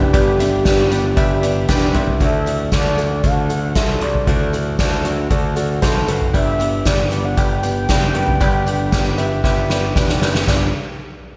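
Lightly reverberant, this short cut from a longer piano-driven pop piece feels uplifting and warm, moving at 116 BPM in a straight 4/4 in G major, tuned to A4 = 436 Hz. A mellow, horn-like synth lead carries the melody with a round, warbling vintage tone, its detuned sawtooth body softened by chorus, vibrato, a filter sweep and a soft attack. Beneath it, a concert grand piano with deep bass and short sustain plays the accompaniment through slapback echo and adds a fill at 5.6 seconds. A woody, full-bodied picked steel-string acoustic guitar with old strings plays a riff in the background, also through slapback echo. An overdriven picked electric bass gives a growly, punchy low end, and a soft-mallet drum kit sits up front with dark cymbals, a boomy kick and a medium-tuned snare, playing a fill at 9.4 seconds. A jingly, compressed tambourine sits faintly behind the band, and the harmony moves from G to D at 2.2 seconds before returning to G.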